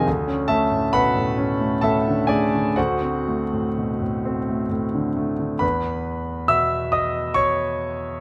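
Impressionist classical solo piano, this brief passage cut from a longer piece has a dreamy, luminous mood, drifting in 3/4 with free rubato at roughly 60-71 BPM in E mixolydian. A concert grand plays alone throughout, spanning D2 to E6, its tone clear and intimate with deep bass, long sustain and a polished sheen, and the noise of the action is audible. Close, detailed microphones place the instrument up front and present, while a moderate scoring stage reverb of 1.6 seconds lends a gentle halo. The harmony opens on a Dmaj7 chord, shifts to D7 at 2.8 seconds, and settles onto an open E5 as a new section begins at 5.6 seconds, the fragment ending at 8.2 seconds.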